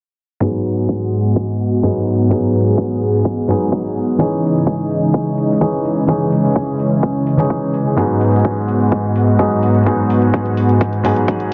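Euphoric and powerful, this brief excerpt from a longer festival progressive house track moves at 127 BPM in a straight 4/4, set in G# minor with tuning at A4 = 439 Hz. Up front, a lush, thick unison pad of detuned sawtooth voices holds sustained chords with a slow attack and long release, its bright, nasal tone thickened by chorus and breathing with sidechain pumping. Beside it, a present, warm baby grand piano plays accompaniment between G#2 and G#4, also pumping from the sidechain and trailed by digital delay. In the background, a punchy, overdriven electronic kick enters at 0.4 seconds and a layered, overdriven hi-hat joins at 0.7 seconds, the kick high-passed and the hats low-passed. Filter sweeps run across the drums and the pad throughout, while light reverb and a soft top end shape the overall sound. The harmony moves from G#m7 to C#madd9 at 4.2 seconds before returning to G#m7.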